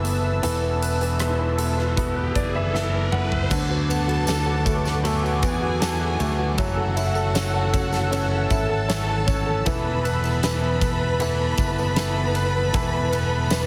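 Tender and emotional, this pop ballad excerpt moves at 78 BPM in A major, with a brilliant concert grand piano over a punchy, up-front fingered bass, a huge arena drum kit with bright cymbals and a pumping room sound, a mellow detuned analog pad with chorus, and a twangy clean electric guitar playing delayed arpeggios in the background. A background riser sounds from 0.8 to 3.5 seconds alongside piano and drum fills, and at 3.5 seconds a lush, expressive violin section with vibrato and delay enters as a second line, joined by a jingly tambourine. The chords move from Asus2/E through D6 and F#m7 and back, under light reverb and a heavily compressed, radio-ready finish.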